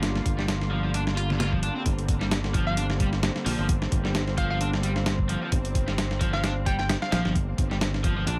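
A gritty, thumpy sampler-style drum kit drives this swaggering breakbeat clip, joined by a punchy, tube-saturated fingered bass, a crunchy double-tracked overdriven guitar riff with dub echo from 0.4 seconds, veiled muted strings pumping under sidechain, and a hollow, bouncy square pluck melody heard between 2.7 and 7.2 seconds through a small-speaker tone, all over a single minor-seventh chord in a lightly reverberant room with vinyl crackle.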